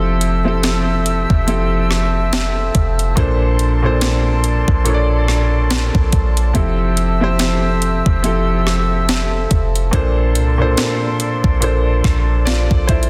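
An intimate concert grand piano, its action noise audible, accompanies this tender, romantic contemporary R&B fragment in F major at a swung 71 BPM, alternating Fmaj9 and Bbmaj9 over a deep, boomy 808-style bass and sustained chords from a small flute group with a pure, vibrato-tinged tone, while a 12-bit drum machine with a thumpy kick, medium-tuned snare, rim click and hi-hat, overdriven and re-recorded in a large room, enters at 0.2 s, all within a dry, dense, heavily limited modern mix.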